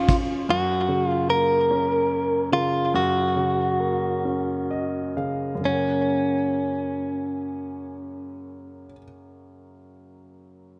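Pop in a swaying 6/8, this tender fragment of a longer piece opens with a hush of lush, bowed strings whose woody vibrato drops out at 0.5 seconds. A clean, picked electric guitar carries the melody up front, its direct, compressed tone trailed by a digital delay. Beneath it, a concert grand piano supplies the accompaniment with deep bass, long sustain and an intimate, polished presence, its action noise audible up close. The pace gradually slows through the opening passage, and the piano adds a fill from 4.2 seconds before the music moves into a new section. The guitar falls away at 8.9 seconds, leaving the piano alone to close, all set in light reverb and soft studio ambience with a gently rounded top end.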